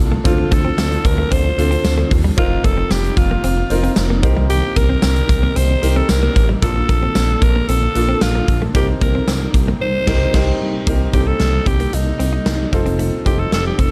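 A clear grand piano, a blurred, evolving granular pad and a smooth, mellow synth bass open this dramatic, urgent 1980s-style pop excerpt, joined at once by a clean electric guitar riff with subtle chorus in the background, a punchy, up-front rock kit with bright cymbals and tambourine, and a breathy, raspy alto saxophone carrying the melody with vibrato and scooped notes, before the whole band hits an accent at 9.8 seconds that leads into a new section at 10.9 seconds, all in a small room.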